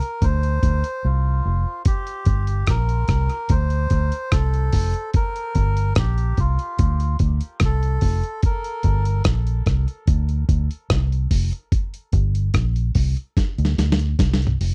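A dry, close recording in a 1970s studio style, this dub reggae passage is cut from a longer piece and carries a deep, spacious mood in a straight four-beat feel. A reedy, breathy melodica with a nasal, plastic-cased edge carries the melody in its middle register, its airy phrases trailing into dub echo before it falls silent at 9.2 seconds. Up front, a vintage muted fingered electric bass gives a dark, round, punchy line from its foam-muted low range. A gritty, compressed sampler-style soul drum kit with a thumpy kick and medium-tuned snare shares the foreground with hi-hat, rim click and toms, dropping out briefly near the start and breaking into a fill at 13.4 seconds. The harmony alternates between Dm7 and Gm before landing on a D7 chord with the third omitted.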